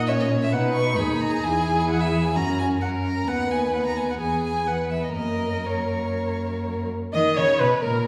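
Cheerful and graceful, this short passage cut from a longer piece is a quick classical-period movement for string quartet in B major, moving at roughly 119 to 133 BPM in 4/4 with a rubato feel. The first violin carries the melody, rising as high as C#6, while the second violin plays a second line and the dark viola fills in the accompaniment beneath them. The cello anchors the bass between D#2 and D#3, its tone warm. All four players bow with vibrato, portamento and expressive shaping, and both violins have a soft attack, with the lead violin sounding close while the viola seems more distant. The harmony moves through B, E and F# before settling back on B at 7.1 seconds, and a wet recital hall reverb places the listener further back in the room, lending the strings a glowing, spacious sheen.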